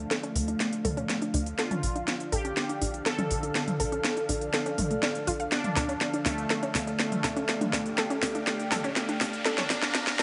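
A straight 4/4 pulse drives this cinematic, dramatic melodic techno excerpt, cut from a longer piece that is building up throughout, with a drum fill running the whole way. The electronic, layered drum kit sits up front, with a cracking snare, smooth hats and toms carrying a tape-warm character from being re-recorded in a small room. A tight, punchy sequencer bass drives underneath with saturated, wave-folded tones. Above it, a juicy, resonant polysynth carries the melody through chorus and tape echo, while a round, detuned analog pluck spins arpeggios in the background, and both sit under filter sweeps alongside a thick, lush unison pad holding sustained chords. A tense, string-like drone with vibrato hums low beneath the mix in its own reverb, and a very quiet electronic riser enters at 7.6 seconds as the hall reverb lends the whole build a spacious sheen.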